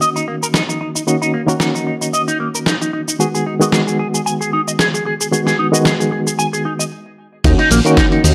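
A barky, overdriven electric piano with fast tremolo, sidechain pumping and tape echo opens this sensual, groovy nu-disco excerpt in Eb minor at 113 BPM with a swung feel, alongside a twangy envelope-filtered electric guitar riff with lush chorus and a gritty, dusty soul sampler-style kit of snare, hi-hat, shaker and crash, moving from Ebm7 to Abm7 until a brief stop at 6.9 seconds, after which a fat analog bass and a thumpy electronic kick drum enter at 7.4 seconds on a return to Ebm7 under light reverb.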